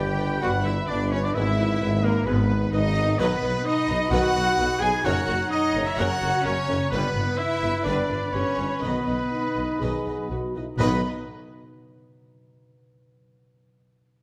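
A moderate scoring-stage reverb gives this heroic, triumphant film-score excerpt a spacious, roomy sound, cut from a longer piece in a straight 4/4 that slows down between 6.0 and 10.8 seconds. A lush, distant violin section carries the melody in the background, shadowed by a second, very quiet violin line along with a pure, silvery flute, a soft-attacked oboe and a clear, smooth-topped clarinet. A close viola section adds expressive accompaniment with portamento, while a fingerpicked, ringing concert harp plays arpeggios that run on alone until 12.8 seconds. Weight comes from a cello section, a double bass section and a roomy tuba holding the bass, with a clear trumpet placing stabs over the texture. From 0.4 seconds, a bright trombone section and a dark French horn section sustain very quiet chords beneath a progression moving from G through E/G# and B to F#, then back to G and B.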